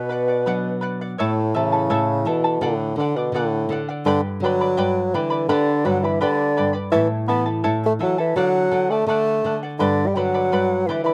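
Andean folk in a wistful, earthy mood, this excerpt moves at 84 BPM in 2/4 with a straight feel, cut from a longer piece and recorded outdoors with little reverb. A mellow bassoon carries the melody up front with light vibrato in a classical style, while an airy, end-blown large quena adds a tongued second line with vibrato, dropping out after 0.8 seconds and returning at 5.5 seconds. Beneath them, a shimmering fingerpicked charango with double strings and a dark, woody nylon-string guitar on old strings supply the accompaniment, each touched by slapback echo, over a chord cycle of Bm, A, D and G.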